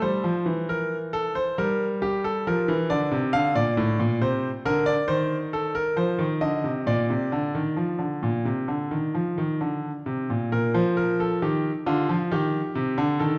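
Lively and elegant, this short excerpt from a baroque-style two-part invention in Bb major moves at 67 BPM in 4/4, with a solo concert grand piano that sounds bright, brilliant and smooth, with deep bass and a vintage, up-front character, set in a dark production and a reverberant concert hall, its harmony passing through Bb and Cm7/Eb before a new section begins at 10.5 seconds.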